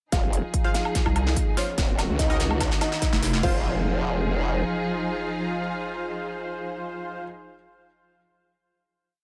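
A half-time 4/4 beat at 145 BPM drives this chaotic, menacing heavy wobble dubstep piece in F phrygian, where a punchy, up-front electronic kick and a big-room kit with a huge snare, crisp hats, woodblock and crash carry a drum-fill build-up to 3.4 seconds over Fm7 and Ebm; a growling, formant-filtered growl bass and a pulsing, detuned pluck wobble bass answer each other with changing wobble speeds, while dark, woody strings pump with vintage sampler grit, a muted felt piano repeats an octave riff with delay in the background, sparse airy supersaw stabs echo, and very quiet risers and impacts lead into a final Fm7 chord that rings to 6.7 seconds in a dry mix.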